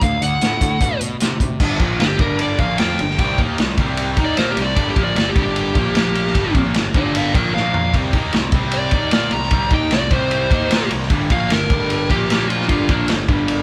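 Blues rock power trio with a southern rock edge, this driving, gritty clip at 151 BPM in 4/4 is played live in one lightly reverberant room: a bright, double-tracked overdriven garage guitar picks the riff over a growly fuzz bass, a vintage drum kit sits up front with a punchy kick and dark cymbals and throws in a fill at 7.5 seconds, and a dark, compressed fuzz lead guitar takes a solo from 1.6 seconds across changes moving from D7 through Gm7, Cm7 and Bb5.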